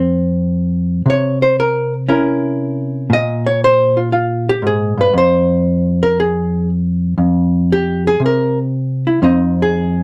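A clean, hollow-body electric jazz guitar, fingered and compressed, sits up front in this cool, moody solo jazz excerpt, swinging in four across a range from low F2 up to F5. The unaccompanied line moves through a brief chord passage and carries on through a chordless stretch from 5.1 s before settling on Fm7 at 9.2 s. Light reverb and a dark, warm production give the piece a late-night intimacy.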